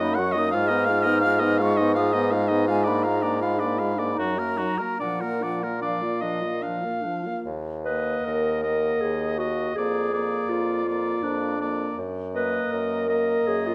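Yearning and elegiac, this slow romantic movement for wind quintet unfolds in triple metre with rubato, cut from a longer piece and moving into a new section at 7.5 seconds. An airy, hollow silver flute carries the tongued melody high above, with vibrato and rolled-off highs. A clear, up-front oboe sings a second line, a mellow clarinet and a distant, roomy French horn fill in the accompaniment, and a warm, up-front bassoon anchors the bass, all in a moderate recital hall reverb captured by close, detailed microphones.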